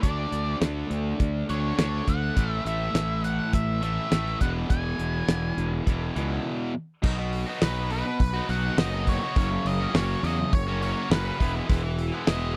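A damped 1970s drum kit sits up front, with a fat snare, a tight kick and a rolled-off top, driving this swaggering, sunny classic rock cut at a straight 103 BPM in 4/4. A bright, double-tracked overdriven electric guitar plays the picked riff in the low and middle register. Beneath it, a growly fuzz fingered electric bass holds down the bottom end, also up front. An octave-fuzz lead guitar carries the dark, picked melody higher up. The opening passage moves through D5, A5 and E, and a brief break at 6.5 seconds leads into a second section at 7.0 seconds that shifts to B, F# and back to E. The sound is dry and close, in the manner of a 1970s studio, and the drums drop out at 12.4 seconds just before this excerpt cuts off.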